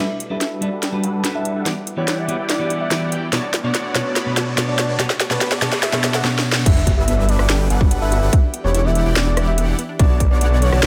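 Emotional and bittersweet, this excerpt of half-time future bass at 144 BPM cycles through Gmaj7, Em7 and Bm7. It opens with a build-up where a dark, round octave-layered synth lead with chorus, vibrato and delay carries the melody, a clean picked electric guitar with spring reverb and delay plays accompaniment, and an airy breathy pad sustains chords. A huge, bright supersaw riff with phaser moves through a filter sweep, a very quiet riser, noise sweep and sub drop add effects, and a trap kit with sharp snare, metallic hats, rim click and crash brings a drum fill, while the lead, guitar and supersaw pump together. At the drop at 6.7 seconds an impact lands, a hard-clipped electronic kick and a thick, up-front detuned saw bass enter, and a very quiet, punchy unison pluck adds arpeggios under light reverb.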